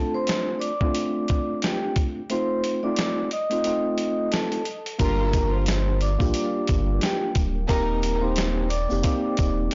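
A metallic, ringing soft-mallet vibraphone melody with slow motor vibrato floats over a mellow, tape-worn tine electric piano, joined at 0.3 seconds by a gritty, compressed sampler-style drum kit with a thumpy kick and fat snare in this tough, swung 89 BPM boom-bap hip-hop cut in G minor, before a round sine sub bass with tube saturation, lush bowed string stabs set in the background and a faint, grainy egg shaker arrive at 5.0 seconds and a dark, detuned analog pad creeps in very quietly at 6.1 seconds, the whole mix blown-out and overdriven with light reverb.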